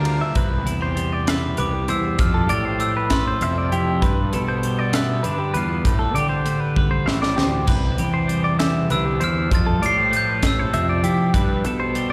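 Math rock meets midwest emo in this playful, wistful excerpt from a longer piece, moving at 66 BPM in a straight 6/8 in C major. A bright, twangy twelve-string electric guitar carries the accompaniment through spring reverb and slapback echo, while a clean, compressed electric guitar picks arpeggios up high with its own slapback. Underneath, a fuzz-overdriven picked bass sits round and up front, and a crisp, polished fusion kit with a high-tuned snare and punchy kick fills the space with hi-hat, ride, splash and toms, including a fill at 6.8 seconds. A glockenspiel struck with hard plastic mallets rings out a bell-like melody in two short phrases starting at 1.6 and 8.9 seconds, its sound boxy and small-roomed. The harmony drifts through Cmaj7, Fmaj9, G9 and Am9 before settling on Gadd9, all heard as a live gig through the venue's PA with a recital hall's reverb.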